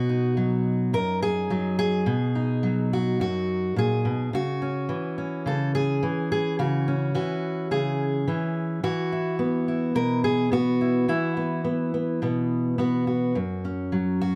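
A fingerpicked steel-string acoustic guitar plays alone throughout this hopeful, peaceful folk excerpt, its dark, full-bodied auditorium tone sitting up front under close, detailed microphones and a light reverb. At 106 BPM in a straight 4/4, the harmony moves from B to C#madd11, then Esus2 at 8.8 seconds, settling on F#5 at 13.4 seconds just before the clip ends at 14.4 seconds.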